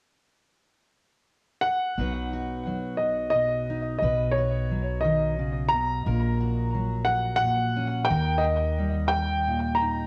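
Anthemic yet nostalgic, this short cut from a longer indie folk piece moves in an unhurried 6/8 lilt with a straight feel, its arrangement building as the parts arrive. A smooth, vintage-toned upright piano carries the melody from 1.6 seconds, sitting up front in the upper register with a cassette-tape grain and a tape echo trailing its phrases. At 2.0 seconds a fingerpicked steel-string acoustic guitar joins as accompaniment, a full-bodied jumbo sound with fresh strings and the same cassette character, alongside a plucked upright bass whose woody tone anchors the low end. The harmony settles on B at 2.0 seconds and later shifts to F#/A# at 6.1 seconds before reaching D#. Light reverb and the home-cassette recording lend the whole a cozy, lived-in intimacy.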